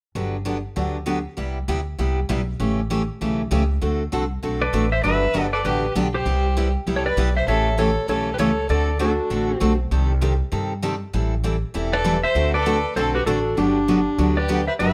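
Lightly reverberant and close, this cheerful, playful slice of western swing bounces along at a brisk swung pace. A bright, full-bodied picked acoustic guitar and a woody, thumpy upright bass played pizzicato carry the accompaniment from the start, moving through jazzy changes such as Gmaj7, Cmaj7, A7 and D7. At 4.6 seconds a twangy, compressed lap steel takes the melody up front, its slide tone clean and warm, while a single bowed fiddle with a nasal, earthy voice and light vibrato adds a softer second line beneath it. Both lead voices drop out at 9.8 seconds as the harmony turns to Cm6 and Am7, leaving guitar and bass to hold the groove. The lap steel and fiddle return at 11.9 seconds, and the passage ends on Gmaj7 as a fragment of a longer piece.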